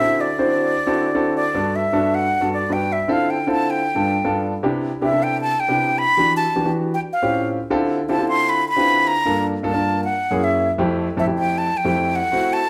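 Bathed in a wet large-studio reverb, this sophisticated, danceable jazz fragment pairs an up-front, close-miked concert flute carrying the melody with a breathy, straight tone and soft attack against an intimate, warm grand piano accompaniment whose action noise can be heard, the harmony moving from D7 and Gmaj7 into a new section at 4.6 s built on rich chords such as Cmaj9, A7alt and Dm11.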